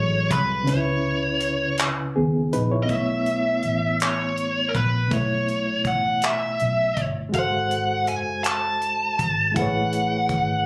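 Caught on a phone in a club room, this yearning, late-night slow six-eight R&B excerpt at 54 BPM features a dark, distorted lead guitar with slapback echo singing the melody up front over a bright, reedy electric piano that pulses with fast tremolo and light overdrive, a round, foam-muted vintage bass, and a dry, damped 70s kit of handclaps, hi-hat and tight kick, with the kick dropping out from 0.7 to 2.9 seconds, as the harmony drifts from F#m9 through B9sus4 and G#7b9 to F#m11.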